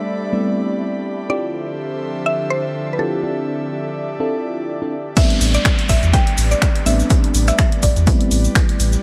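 Warm and deep, this deep house excerpt at 124 BPM in A minor opens on a woody, mallet-like FM pluck melody with tape echo, a breathy, chorused pad, a mellow, round FM electric piano playing filtered, phased stabs with 12-bit grit, and a faint ethereal pad over Am11 and Dm11 chords, until the drop at 5.2 seconds brings a punchy up-front kick, an analog drum machine with hi-hat, snaps and crash, a very quiet dark jazz kit, a grainy cabasa, a downlifter, and, from 5.4 seconds, a full sine sub bass with sidechain pumping, all in a small, lightly reverberant room.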